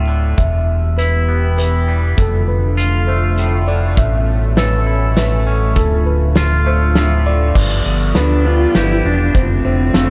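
A round, up-front fingered electric bass anchors this brooding, cinematic post-rock excerpt in D dorian at 100 BPM in 3/4, where a clean, twangy electric guitar plays arpeggios through spring reverb and tape echo, a felt-muted upright piano adds soft, mellow arpeggios with tape echo in the background, a detuned, resonant pad sustains chorused chords, a loose indie drum kit with a tight kick and pumping room sound keeps time, and a dark, woody bowed cello with vibrato enters at 8.2 seconds with a melody, inside a dreamy mix soaked in cathedral reverb.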